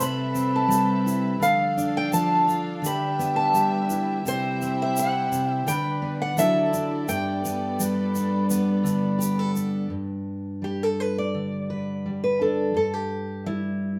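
This hopeful, pastoral acoustic folk excerpt in G major opens with everything at once: a picked old ladder-braced acoustic guitar carrying the melody up front with a boxy tone, a fingerpicked steel-string jumbo guitar supplying bright, full-bodied accompaniment with audible finger squeak, a mellow, reedy accordion on a second line, a dark chamber string section holding soft-attack sul tasto chords with light vibrato, and a grainy egg shaker. The tempo is a relaxed 85 BPM in a straight 4/4. The harmony moves through C6, Dm and G6/D toward Dadd9 and Gadd9, giving the opening passage a gentle, open color. Around 9.9 s the accordion, strings and shaker have dropped away, and the steel-string guitar takes a solo while the ladder-braced guitar continues its melody over G and Em/G. A moderate large studio reverb lends the ensemble space while the two guitars stay close and present.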